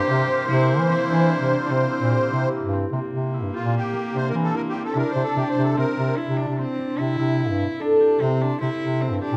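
Shimmering and restless, this excerpt of contemporary chamber music moves in an uneven 7/4 at 148 BPM in C mixolydian, with a reedy, dark musette accordion carrying the melody up front until 6.2 seconds over a rich, biting cello second line, ringing thumb-plucked concert harp arpeggios, a smooth, mellow bass clarinet bass, and warm sustained woodwind-section chords with light vibrato that drop out of the background at 2.9 seconds, all captured close and detailed in a moderate recital-hall reverb.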